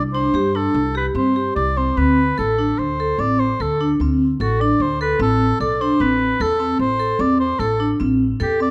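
Light reverb gives this short cut from a longer contemporary chamber piece a shimmering, hopeful air, moving at 149 BPM in an uneven 5/4 with a straight feel and tuned to A4 = 442 Hz. A warm oboe carries the solo melody in classical style with light vibrato, while a bright, ringing vibraphone played with medium hard mallets and a slow motor vibrato spins arpeggios from 0.1 s, and a woody pizzicato upright bass on steel strings anchors the low end, all three sitting up front. The harmony moves from Csus2 to D5 at 2.0 s and settles on Am at 6.0 s.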